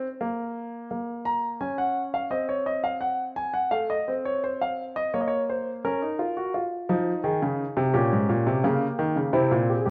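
Serious and contemplative, this short cut from a longer piece is a baroque-style three-part fugue in B-flat minor, moving at a measured 85 BPM in a straight 4/4. A baby grand piano plays alone throughout, its tone present and polished, sitting up front and spanning from Ab2 to Bb5. The harmony starts unaccompanied by chords, then settles on B-flat minor at 0.9 seconds and works through diminished and dominant colours, passing F7 over A and F minor before landing on C7 at 9.3 seconds. A wet stone room reverb gives the instrument a resonant halo. The sound carries the character of worn old cassette tape, with a warbling pitch drift that lends the austere counterpoint a faded cast.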